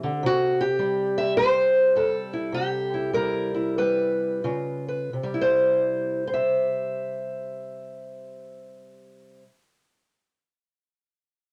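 Soulful and laid-back, this short excerpt of acoustic country blues in C major features a lone fingerpicked steel-string parlour guitar, dark and boxy in tone and placed up front with a cassette-tape grain, swinging in 4/4 at 86-106 BPM as it slows down from 0.2 to 5.1 seconds, moving from C to Db7 and back to C in a small, wet room on a home cassette recording.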